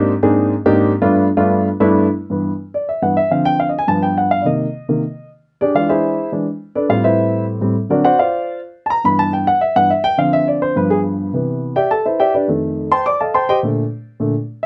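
Jazz excerpt at a brisk, straight 209 BPM in 4/4, sunny and danceable, with a lone mellow, up-front grand piano tuned to A4 = 436 Hz, ranging from F2 to D6 with short sustain, opening on Abmaj9#11 and G9 before taking a solo from 2.2 s through rich changes like Dm7b5, E7b13 and D7alt, then settling into C major at 11.3 s over Cmaj9, F9 and Bbmaj7, all framed by light reverb and a dark, warm production.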